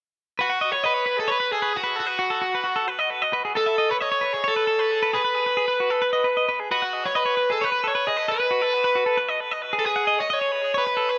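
Two electric guitars enter together at 0.4 s in this bright, playful rock excerpt, set in a brisk 7/8 at 266 BPM counted in eighths with a straight feel and tuned slightly sharp at A4 = 441 Hz. A biting, overdriven guitar carries the melody up front between F#4 and D#5, while a clean, twangy electric guitar plays compressed, picked arpeggios from F#4 to F#5, also sitting forward in the mix. Each guitar is treated with dub echo, and the echo-heavy mix sits in a light reverb. The harmony moves through G#m7, B7 and Amaj9, shifts to an unchorded passage at 5.1 s, then returns to the same progression at 6.7 s. Both guitars play through to 11.2 s.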